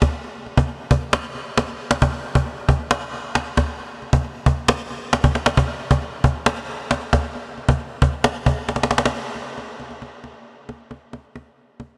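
A half-time hip hop groove at 135 BPM in 4/4 is carried by a lone cajon. This dark, eerie piece is cut from a longer work. The cajon sounds woody and acoustic with faint snares. It sits close, dry and up front, and vintage 12-bit sampler grit roughens its edges. Its low kick drops out from 1.1 to 2.0 seconds, and a short drum fill at 8.7 seconds leads into a new section at 9.1 seconds. The mix as a whole is soaked in a moderate amount of huge ambient reverb with a 4.5-second decay, giving the groove a dreamy, eerie air.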